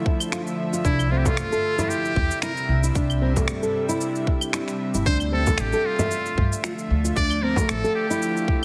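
Hypnotic and meditative, this organic downtempo excerpt in D minor moves at 114 BPM with a light 16th-note swing, as a tense, sawtooth-edged drone with sidechain pumping and thumb-plucked nylon-string guitar arpeggios with delay open at once over Dmadd9 and C69 chords, joined by a tight electronic kick, electronic claves, cabasa and finger snaps, a woody pizzicato upright bass from 0.8 s, a buzzy, metal-muted jazz trumpet melody with vibrato and tape echo, and a hard-handed frame drum from 1.3 s, all set in an echo chamber reverb with a heavily compressed radio sound.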